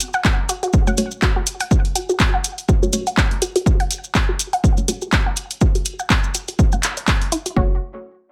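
Dry and close-sounding, this clinical, cool minimal techno excerpt sets a punchy, tape-warm electronic kick up front beside an analog drum machine's handclaps and hi-hat, with grainy acoustic maracas and a swung sixteenth-note feel, while a squelchy, resonant blip pluck riff with phaser, sidechain pumping and digital delay and a muted, deep dub chord stab with phaser and dub echo both move under filter sweeps, before a hollow, knocking FM bass slips in at 7.6 seconds.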